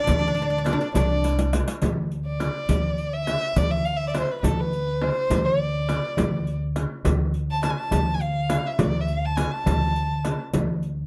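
A dark, bowed violin with vibrato and plate reverb sings a soulful, longing melody up front in this 6/8 Arabic maqam ensemble fragment, joined by a bright, plectrum-plucked fretless oud that plays only until 1.6 seconds, a thumpy pizzicato upright bass with woody steel strings, and a percussion bed of crisp, distant metal-shell darbuka, deep hard-handed frame drum and close, dry riq jingles, with a drum fill from 1.2 to 1.8 seconds leading into the next section.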